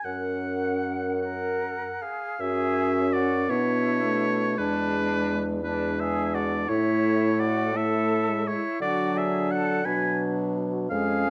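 Lyrical and tender, this slow romantic movement for wind quintet moves in a rubato 6/8 at about 50-58 beats per minute, counted in dotted quarters, and is cut from a longer piece. The concert flute carries the melody with an airy, distant tone, tongued notes and expressive vibrato, while an up-front oboe with light vibrato sings a second line alongside it. Beneath them, a dark clarinet with soft attacks and a French horn with a smooth top and gentle vibrato fill out the accompaniment, and a mellow, up-front bassoon anchors the bass. All five instruments sound from the opening moments to the end at 11.3 seconds, with a new section beginning around 2.4 seconds as the harmony moves through B minor, E7, A and D before settling on a B minor sixth chord. A moderate large-studio reverb and a dark, warm production give the ensemble a soft, blended glow.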